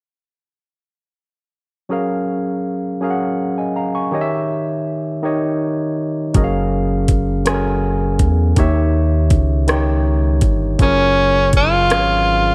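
Light reverb and a digital ambience give this short excerpt from a longer piece a warm sound. It is a slow, tender R&B tune in 6/8 at 54 BPM in F# major, with a straight feel. A barky tine electric piano, clean and played through a combo amp, opens at 1.9 seconds, voicing F#maj9 and D#7b9 chords. At 6.3 seconds an electronic drum kit arrives with a knocking kick, metallic hi-hats and rim clicks, and a rubbery, hollow square-wave bass joins almost at once with a dark, bouncy filter pluck. At 10.8 seconds a new section begins, and a bright, punchy tenor saxophone takes the melody up front with pop-style vibrato.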